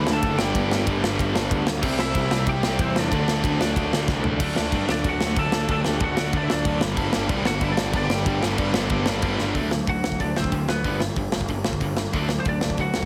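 A big, up-front rock drum kit drives this rebellious, energetic punk rock excerpt at 187 BPM in D mixolydian, its bright cymbals and punchy kick ringing in a large room, while an overdriven, fuzzy picked bass adds a gritty low end over G, C and D chords. A twangy, slightly broken-up lead guitar carries the melody above a background wall of riffing guitars: one overdriven and brilliant, one biting that drops out at 4.4 seconds and returns at 7.0, and a dark, double-tracked, very quiet fuzz guitar that stops at 9.5. The dry mix has a heavily compressed, radio-style sound.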